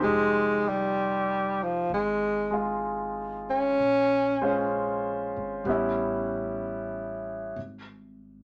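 A studio sound with moderate reverb frames this short, smoky jazz ballad fragment, swung and melancholic in mood. Up front, a mellow tenor saxophone carries the solo melody with vibrato, subtone and scooped notes until 4.7 seconds, while an intimate baby grand piano, its action noise audible and its notes ringing long, accompanies through Fm9, Bbm7 and A9 before stopping at 7.6 seconds. Beneath them, a woody pizzicato upright bass sits low in the mix and plays from the start until 8.4 seconds.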